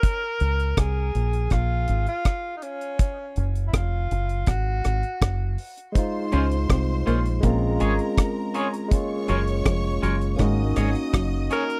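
A tight-kicked reggae drum kit with hi-hat and rim click sets a tender, smooth lovers rock groove in straight 4/4, joined almost at once by a round, punchy, foam-muted fingered bass sitting up front. A clear tenor saxophone with light vibrato and tape echo carries the melody until 5.6 seconds, after which a barky tine electric piano with tape echo, a lush bowed string section, a slightly broken-up picked guitar riff in the background and a twangy fingered guitar playing stabs through a tremolo effect fill out the arrangement. The sound is dry and close, in a 1970s studio style, and the passage is cut from a longer piece.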